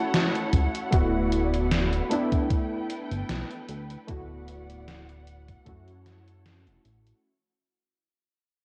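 At a slow 76 BPM in 4/4, a gated 80s digital drum machine ticks out hi-hat and snare with a slight 16th-note swing, its snare wrapped in gated reverb and set up front in a large-room sound. A thumpy electronic kick enters at 0.5 s alongside a glossy, chorused synth bass that sits low and retro, and the kick drops away at 5.8 s. Over them, warbling lo-fi synth keys built from detuned triangle and sawtooth tones carry the accompaniment, with ring modulation, a filter sweep, lush chorus and analog delay giving them a nostalgic haze. Behind everything, a muted studio string section holds dark, veiled bowed chords played con sordino with vibrato, sounding distant. The harmony drifts through F#m7, D69 and G69 before returning to D69 and F#m7. This faded, woozy vaporwave excerpt carries a worn cassette-tape wobble and light digital ambience throughout, and it fades out across its full 7.2 seconds.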